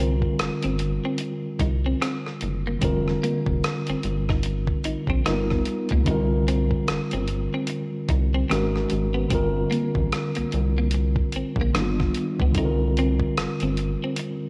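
A rubbery, hollow square-wave bass sits up front in this soulful, late-night neo-soul and R&B fragment, its wave-folded tone dark and resonant, with a fast filter pluck, long sustain and a coat of tube saturation. Beside it, a mellow tine electric piano carries the accompaniment, clean and heard as if through its built-in speakers. A dusty, sampler-style soul kit of hi-hat, kick drum and rim click adds a gritty, compressed pulse with a thumpy kick, swung on the sixteenths. A bright, twangy picked electric guitar plays a quieter second line dressed in lush chorus. The harmony moves through suspended and altered dominant colours, from C7sus2 through Fsus4, G7alt, Ab7sus2 and Gm7 before returning to C7sus2 at 12.6 seconds. Moderate echo chamber reverb and lossy compression artefacts give this short cut from a longer piece a worn, after-hours character.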